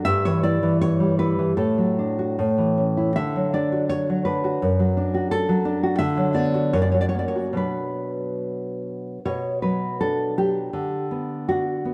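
A solo nylon-string guitar opens at once, its dark, full-bodied, thumb-plucked tone set up front in a moderate concert hall reverb. This short romantic passage, cut from a longer piece, feels tender and nostalgic, moving in a free, rubato 2/4 at roughly 68-88 BPM. The harmony begins in D major, passing through Em/G, D/A and A before settling on D. At 6.0 s it turns toward B minor, with F# leading to Bm and lending the phrase a wistful shade. A new section arrives at 9.2 s and closes on Bm/D, the deep classical voice of the guitar carrying the music alone to the end at 11.9 s.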